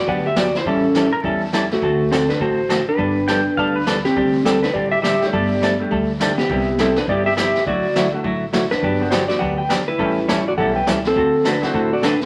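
A wet studio reverb and a bed of vinyl crackle frame this playful, down-home western swing excerpt in G major, moving at a swung 206 BPM. A dark, compressed lap steel guitar carries the melody up front with slide and volume swells, over a clean hollow-body jazz guitar, a woody, thumpy pizzicato upright bass and a vintage kit played with brushes, its punchy kick and rolled-off top sounding like a small room. A warm pedal steel guitar adds a fingerpicked second line from 1.1 to 4.0 seconds, and a bright, brilliant upright piano with long sustain enters in the background at 5.2 seconds as the chords move through Gsus2, Cmaj7 and Dadd9 before returning to Gmaj7, A7 and D7.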